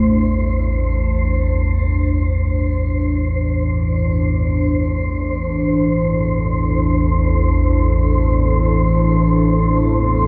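In free time, this vast, ominous dark ambient drone sets a nasal, up-front analog drone with a filter sweep beneath a deep, detuned pad holding sustained chords and a breathy, wind-like tuned noise texture under shimmer reverb, while a metallic bronze singing bowl rings barely audibly for its first 1.3 seconds, all steeped in a cavernous cathedral reverb.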